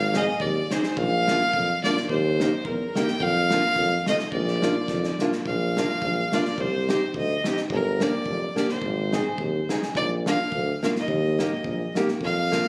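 Alpine folk dance-band music with a festive, bouncy swing in two, where a biting, intense fiddle carries the melody up front with light vibrato and a slapback echo, a clear tuba holds down the bass beneath it, a fingerpicked steel-string acoustic guitar adds warm accompaniment, and a loose, gritty drum kit of punchy kick and medium-tuned snare plays a fill at 4.9 seconds, all heard in a recital-hall reverb through a phone recording made in the room.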